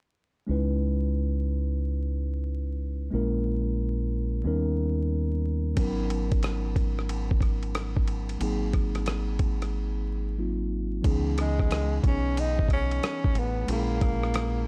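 A mellow, nocturnal jazz-hop excerpt at 91 BPM in C# dorian, with a swung 16th feel, opens on a clean tine electric piano heard through its built-in speakers over a dark, round, tube-saturated fingered electric bass; a dusty, compressed sampler-style kit with a thumpy kick, hi-hat, ride and rim click arrives up front at 5.8 s, and after a brief break a breathy, whispered tenor saxophone takes an intimate solo with vibrato from 11.4 s, the whole captured in a dry, gritty recording flecked with vinyl crackle.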